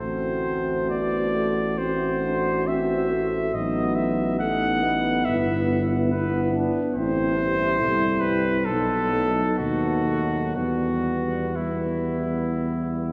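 A clear, smooth-topped cornet carries the melody up front in this serene, lyrical brass band passage, a hymn-like classical piece in E minor taken at a slow 68 BPM in 4/4 with an uneven, rubato feel. Beneath it, a French horn section with a warm vibrato sings a present second line, while a trombone section, clear and lightly vibrato, and a solo trombone with a vintage glow fill in the accompaniment from the background. A mellow tuba with light vibrato anchors the bass up front, reaching as low as G1. All five parts sound together for the full 13.1 seconds of this fragment cut from a longer work. The harmony moves from F#dim/A through B7/A and Em/G to Am, B7 and a settled E minor at 10.6 seconds. A wet cathedral reverb with a 4.9-second decay places the band further back in the room, lending the ensemble a spacious, devotional glow.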